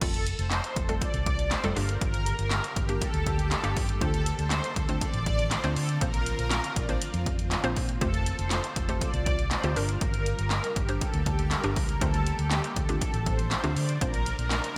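Dance-pop at its energetic, driving drop, this short cut from a longer piece sets a lush supersaw pad melody over a bouncy, hollow square pluck, a blurred granular cloud pad in the background, a round, foam-muted fingered electric bass and an up-front, punchy analog drum machine of kick, snare, handclaps, hi-hat and crash drenched in gated reverb, the pad, pluck, cloud and bass all pumping with sidechain over a cycle of Fadd9, Gm, Dm7 and Bbadd9 in bright 1980s-style digital production.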